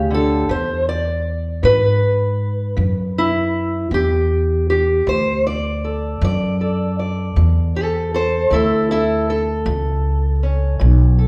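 Rollicking and swaggering, this short acoustic country blues fragment in a straight 12/8 pairs a dark, boxy fingerpicked parlour guitar carrying the melody with a woody pizzicato upright bass, both up front throughout and bathed in the wet reverb of a recital hall as the chords move from E to D to A.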